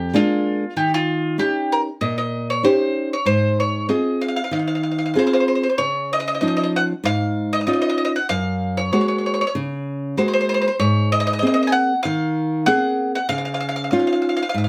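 A gently swung four-beat lilt carries this sunny, lively Italian folk serenade, cut from a longer piece, as a mellow, picked bowl-back mandolin with its doubled strings sings the melody up front over a fingerpicked, classical-style nylon-string guitar accompaniment, both sharing a moderate studio reverb and moving to a new key and added-ninth harmonies at 5.8 seconds.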